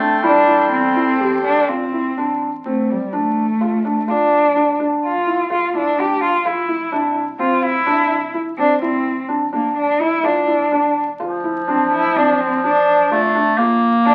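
A dark, woody cello carries the pensive, restless melody up front with vibrato and portamento in this contemporary chamber piece in 5/4 at 126 BPM in D minor, over soft felt-muted upright piano arpeggios with audible action noise, a very quiet deep sine sub bass, and a reedy, breathing harmonium that holds chords only until 1.7 seconds, while a bright, smooth-topped clarinet adds a second line at the start and returns at 11.2 seconds, all heard through wet studio reverb and the crackle of a very old 78 rpm record.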